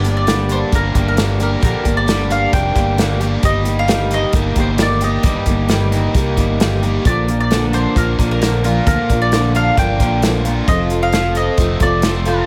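A straight 4/4 pulse drives this short folk rock and heartland rock passage, with a natural country drum kit setting the groove on hi-hat, punchy kick and a medium-tuned snare that sounds airy and polished. Fingered electric bass sits low and round beneath it, while a dreadnought steel-string acoustic guitar picks out the accompaniment. A biting overdriven electric guitar, double-tracked, carries a riff through the mid and low range. Above them a mellow mandolin takes the melody, its double strings touched with analog delay. The harmony moves through Gm, Eb/G, Bb and F, and light reverb with small room ambience gives the dusty, reflective mood an intimate setting as all five parts play together from the start until about 12.5 seconds, where the cut from a longer piece ends.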